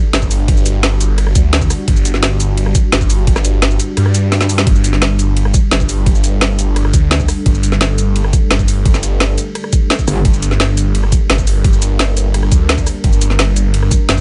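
A deep, moody ambient pad with chorus, reverb and sidechain pumping opens this futuristic, dark technical drum and bass excerpt at 172 BPM in G harmonic minor, joined at once by a thick, swirling detuned saw bass with phaser and overdrive, an up-front overdriven kit of woody snare, bright hats, ride, rim click and shaker, and a knocking electronic kick that drops out at 4.0 seconds under a drum fill before returning, while a metallic, aggressive wobble bass with chorus flashes by at 10.1 seconds.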